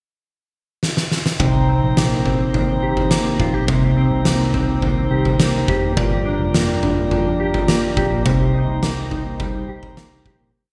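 An oversized, low-tuned drum kit sits up front with a boomy kick, fat snare and gated reverb, opening with a fill at 0.8 seconds before a fingerpicked, chorused and delayed electric guitar, a flute-like tonewheel organ through a slow rotary speaker, and a round, foam-muted picked bass with slides enter at 1.4 seconds in this ethereal, hazy dream pop piece at 105 BPM in C minor, moving from Cm7 to Gm7 under a wet plate reverb and bright 1980s-style digital production before fading out from 8.3 seconds.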